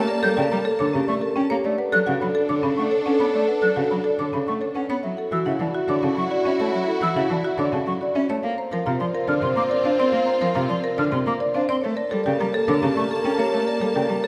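A moderate scoring-stage reverb gives this bright, propulsive minimalist classical excerpt a sense of space as it moves in 3/4 at 106 BPM through Gmadd9, Bm7, Dadd9 and Bbsus2 chords. A mellow, round marimba played with soft mallets carries the melody, while a second marimba with medium-hard mallets and a pure, hollow flute spin out woody and warm arpeggios. A solo French horn holds a second line in the background, a bowed cello sits up front with expressive vibrato and portamento, and a lush symphonic string section sustains smooth chords throughout.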